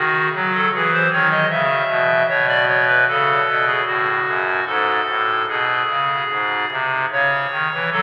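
A classical, chorale-style piece for pipe organ in C# minor, this eight-second fragment of a longer work moves at a rubato 75 BPM in 3/4 with a solemn, dark mood. The organ plays alone on a hollow clarinet reed stop, up front with romantic voicing across a range from F#2 to E5, as the harmony passes from D#m through B7sus2 and F#m/A to a G# chord before settling on C#m. A cathedral reverb of 5.4 seconds bathes the sound, heard through the crackle of a very old 78 rpm record.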